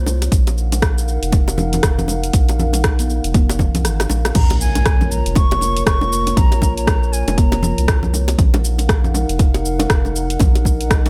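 Over a swung 119 BPM afro house groove in Bb minor, an overdriven, deep electronic kick drives an afro-pop kit of warm hi-hat, rim click, shaker and crash, along with tight, high-tuned bongos and ringing congas that sit in the background from 1.6 s. Beneath them, a round, nasal analog bass and a moody, detuned analog pad with chorus both pump under sidechain. After a brief break and drum fill, the drop at 4.4 s brings a very quiet electronic impact and an airy, hollow concert flute with vibrato and delay, as the chords shift from Ebm to Bbmadd9 and back in this spiritual excerpt.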